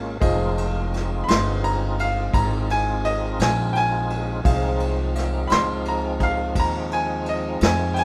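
Mournful and smoky, this slow blues excerpt moves at 57 BPM in a straight 12/8 feel, in F minor, settling on an Fm7 chord from 0.2 s. A bright upright piano carries the solo line from 1.2 s, its brilliant, woody tone polished and present, with short sustain, high in its range. Beneath it, a tonewheel organ holds full, lightly overdriven chords colored by chorus vibrato and a slow rotary speaker. A clear concert grand piano plays accompaniment in the background, intimate and boxy, with audible action noise and long sustain. An upright bass sits up front with thumpy, gut-string pizzicato, while a vintage brush drum kit enters at 0.2 s with a punchy kick, a medium-tuned snare and dark cymbals under a rolled-off top. The sound is dry, with little reverb, in a rough home demo mix.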